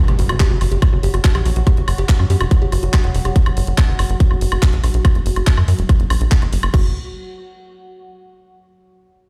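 A tight, punchy sequencer bass drives this hypnotic, alien psychedelic trance excerpt at 142 BPM in F# major, its sawtooth and square tones shaped by a moving notch and a filter sweep across the opening 6.7 seconds, under an up-front, layered electronic kick that enters at 0.4 seconds. A garage drum kit adds crash, handclaps, warm hats and woodblock, while a dark, woody wave-folded pluck plays a riff with chorus, dub echo and sidechain pumping, and a very quiet impact marks the start. Above them, a resonant drone sustains chords with sweeping overtones, chorus and pumping, and the whole mix carries the stone-room reverb of a big sound system in a bare space.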